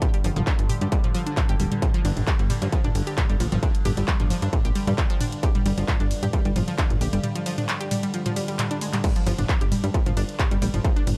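A distorted, overdriven kick drives this intense, industrial slice of peak-time techno from the first beat. It is joined at once by a layered electronic kit of hats, claps, ride, crash and toms, a bright, detuned analog pluck riff with chorus and delay, and a resonant drone of moving overtones in the background; the pluck, the drone and the kit's hats, cymbals and toms all pump against the kick. From 0.2 seconds a tight, punchy sawtooth sequencer bass sits up front, a break from 7.2 seconds brings a drum fill and a very quiet electronic swell, and the whole dark production carries light reverb and digital ambience.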